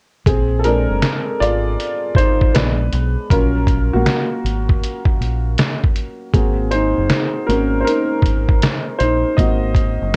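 A 79 BPM groove in 4/4 swings its sixteenths at 66%, carried by a sampler-style trip hop kit of hi-hat, thumpy kick and medium-tuned snare that sounds compressed, pitched down and muffled, as if re-recorded in a small room, and sits up front. This lo-fi hip hop cut, taken from a longer piece, feels reflective and nostalgic. A dark, round, punchy fingered electric bass, recorded direct and amped, holds down the low end from Gb1 to Cb2. An intimate, woody upright piano takes the solo from 0.3 s to the close, slightly detuned and full of audible action noise, its tone dulled by cassette tape and a low-pass filter. The harmony drifts from Bb9 to Bb7b9, then to a rootless Ab9sus4 that settles into Ab9, all under light reverb and a cassette tape sheen.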